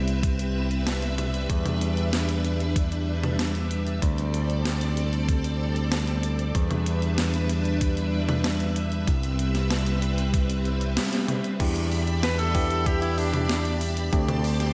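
Nocturnal and driving, this short synthwave cut in E minor moves at 95 BPM, with a lush, sawtooth-rich string machine pumping through sustained chords over a bright, picked electric bass with tube saturation, a thumpy electronic kick and a clean 12-bit drum machine supplying hi-hat, medium-tuned snare, toms and crash. The harmony cycles through Cmaj7, Em7 and D7sus4, and after a band accent at 11.0 seconds a bell-like tine electric piano enters at 11.6 seconds with stabs trailed by diffuse ambient delay. At 12.2 seconds a clear, distant tenor saxophone adds a brief vibrato-laden line with delay, all set in a dreamy mix soaked in a 2.2-second hall reverb.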